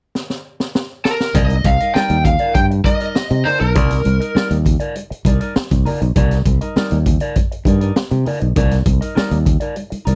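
A straight 4/4 funk groove at 100 BPM in C minor opens with a drum fill on a raw garage kit, whose boomy kick, high-tuned snare and hi-hat sound gritty, mid-forward and rolled-off at the top in a small room. The lead guitar, overdriven through a small cranked amp and sitting up front, plays a short picked melody between Bb4 and G5 that starts at 1.1 seconds and stops at 4.5 seconds. From 1.3 seconds the band settles onto a single Cm9 chord, with a growly, bright fingered bass pushed forward and thickened by transformer saturation, ranging from B1 to C3. Beneath it, a slightly broken-up, lo-fi electric guitar through a small old amp adds quiet wah-colored accompaniment between Eb4 and Eb5, while very quiet congas with thin skins and soft hands add compressed, saturated percussion. The dry, close 1970s-style studio sound gives this cut-down piece a hypnotic, sly mood.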